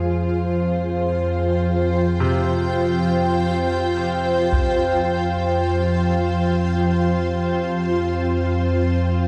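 In free time and rooted in F minor, this dark ambient drone, cut from a longer piece, feels unsettling and cavernous. An organ-like drone spanning F2 to F3 sits up front, calm and sustained, its sine and triangle tones colored by ring modulation, a moving notch, ensemble chorus and a filter sweep. Above it, a bright granular cloud pad holds blurred, detuned chords between F4 and G5, while a bronze singing bowl, played with a felt mallet, rings faintly with slow beating. From 2.2 seconds, a clear baby grand piano plays arpeggios on C3 in the background, its intimate action noise audible and trailed by tape echo. A taiko ensemble with hard sticks strikes briefly at 4.5 seconds, muffled by a low-pass filter in a small room. The mix is dreamy, soaked in a lush hall reverb with a cassette tape character.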